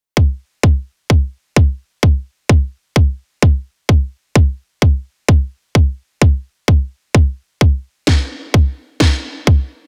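A tight, layered electronic kick drum opens the clip at 0.2 s and sits up front, setting a gritty, swaggering bass house pulse at 129 BPM in 4/4. The groove carries a 58% swing on the sixteenths, giving the steady beat a loose, strutting lilt. For most of its length the kick holds the spotlight alone, its produced punch dry in a room with little reverb. At 8.1 s a cracking, tape-warm electronic snare joins, also layered and placed up front, before dropping out at 9.1 s. The master is dense and heavily limited in a modern style, and the clip is cut from a longer track.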